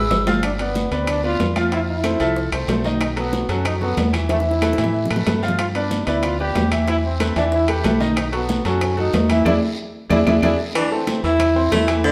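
A salsa band playing live in one stone room rings out in a wet reverb on this danceable, passionate cut from a longer piece, moving at 186 BPM in straight 4/4. A brilliant, present upright piano with audible action noise joins a dark, punchy dub-style fingered electric bass that sits up front. Alongside them, thin-skinned, high-tuned congas, round low bongos, ringing metal-shell timbales, woody claves and a raspy vintage guiro keep the groove, with drum fills at 4.3 and 9.9 s. A roomy trombone carries the vibrato-laden melody from 0.4 s, and a smooth-topped baritone saxophone adds a second line from 10.8 s as the chords settle on Am.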